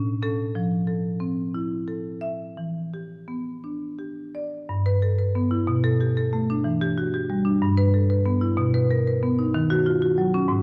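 Reflective and flowing, this contemporary classical excerpt for solo marimba moves in a rubato 6/8 at roughly 56-63 BPM, counted in dotted quarters. The marimba, struck with medium hard mallets on rosewood bars, sounds woody, percussive and smooth, sitting up front as it ranges from G2 to E5. Its harmony begins in E minor, passing through chords such as Fmaj7 and Em7, then turns toward G major at 4.7 seconds, where a second section opens on G6 and drifts through Bm7, G69 and B before arriving at Ebm7 at 9.5 seconds. A recital hall reverb with a 1.6-second decay surrounds the instrument, and the dark, warm production colours the whole. The passage is cut from a longer piece and runs just over ten seconds.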